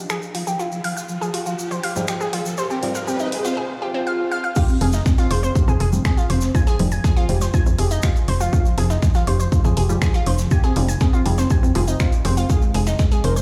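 Dark and dramatic, this melodic techno excerpt in F minor at 121 BPM opens with a build-up where a riser and swell climb beneath a brassy, sustained synth brass melody, bright detuned analog pluck arpeggios under a filter sweep, and muted, phased dub chord stabs sitting in the background, all pumping against the beat and trailing echoes. An overdriven analog drum machine with crash, snaps, hats and toms plays throughout beside a grainy tube shaker. At 4.6 seconds the drop lands with a layered, up-front electronic kick, a gritty sampler-style kit with a fat snare tucked behind, and, from 4.8 seconds, a tight, driving sawtooth sequencer bass with ring modulation, all filling a large, reverberant room.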